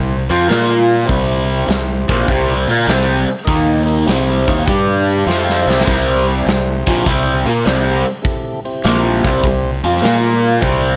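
A raw, double-tracked garage guitar sits up front, carrying an overdriven, picked riff colored by a phaser across this brief, raunchy cut from a longer blues rock and southern rock jam. Beneath it, a growly fingered bass, fuzzed and overdriven, holds down the low end with a swaggering, swung feel in 4/4. A big rock drum kit in a roomy space punches along with a tight kick, medium-tuned snare, hi-hat and splash cymbal, its top end rolled off, entering at 0.3 seconds. In the background, a mellow, dark tonewheel organ sustains round chords through a slow rotary speaker with light overdrive, stepping forward for a short fill at 4.7 seconds, with the drums adding a fill of their own at 5.3 seconds. Light reverb ties the trio and organ together in a loose, strutting groove.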